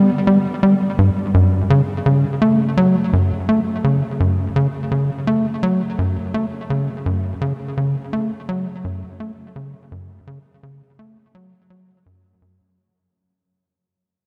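A tight sequencer bass opens this short ambient clip alone, its sawtooth and square-wave tones shaped into a punchy filter pluck with a fast attack that then decays. Set at a steady 84 BPM in a straight 4/4 and tuned to A4 = 442 Hz, it stays within a low register from F#2 to A3, driving the piece with a hypnotic, mysterious pull. Tape echo trails each note, and the bass sits up front while a huge, wet reverb with a 7.5-second tail surrounds it in a vast, dim space. The production is dark and warm, giving the sound a shadowy depth. A fade-out begins at 1.3 seconds and runs until the clip ends at 12.8 seconds, as though the passage has been lifted from a longer piece.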